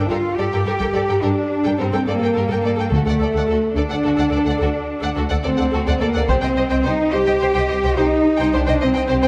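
Dark, distant French horn chords, smooth, even cellos, a second violin line in the background and calf-headed timpani that stop at 3.7 s open this dramatic, relentless slice of epic orchestral film score in G minor at 71 BPM in 12/8. They are joined almost at once by a lush, focused violin melody, close, clear violas and intense up-front double basses, with heavy-stick taiko hits arriving at 0.8 s and again from 6.3 s, all in a wet scoring-stage reverb as the chords move from Gmadd9 to D to Cm.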